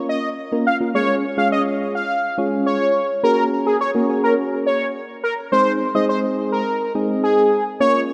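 Pop in Db major at 105 BPM with a straight 4/4 feel, this short cut from a longer piece feels carefree and euphoric, moving through Bbm, Db, Gbadd9 and Ab. Soft, round electric-piano-like synth keys with a mellow, decaying tone and chorus and phaser carry the accompaniment up front, while a bold, retro octave-doubled lead with a bright sawtooth edge, filter sweep and vibrato sings the melody through chorus, phaser and digital delay. A lush hall reverb with a 2.8-second tail bathes the rough home demo mix.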